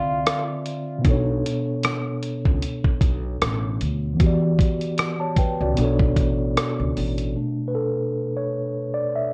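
A mellow tine electric piano sits up front in this melancholic, hazy lo-fi hip hop excerpt in B minor, its clean tone coming through built-in speakers and softened by cassette tape and a low-pass filter. At 76 BPM in 4/4 with a 55% swing on the sixteenths, the piano moves through Dm7, Bm7, Em7 and back to Bm7, while a woody, pizzicato upright bass with gut strings holds the low end. A gritty, compressed sampler-style drum kit comes in at 0.3 seconds with a thumpy kick, hi-hat and rim click, re-recorded in a large room yet placed up close. Bass and drums drop out at 7.3 seconds, leaving the electric piano to play a brief solo until 9.3 seconds. Light reverb and a worn, warbling old-tape sound with pitch drift give the recording its hazy character.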